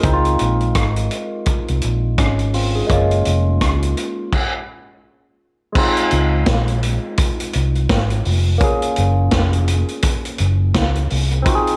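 Tender and sweet, this lovers rock reggae passage cut from a longer piece moves at 84 BPM in Db major with a swung sixteenth-note feel, as a barky, lightly overdriven tine electric piano with phaser and slapback echo sits behind a round, foam-muted electric bass and an up-front vintage drum kit of punchy kick, medium-tuned snare, rim click, hi-hat and dark crash, with its own slapback echo, while major-seventh chords give way to a stop at 4.3 s before the groove resumes at 5.8 s in a small, lightly reverberant room.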